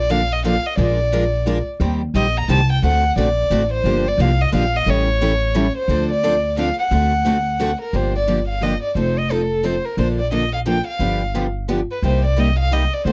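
Swinging and fiery, this acoustic jazz manouche piece in 3/4 sets an intimate, airy-bowed violin with light vibrato and slapback echo over a woody, thumpy pizzicato upright bass on gut strings, joined by a bright, boxy parlour guitar and a full-bodied dreadnought guitar further back, heard in a dry, close 1970s-style studio sound.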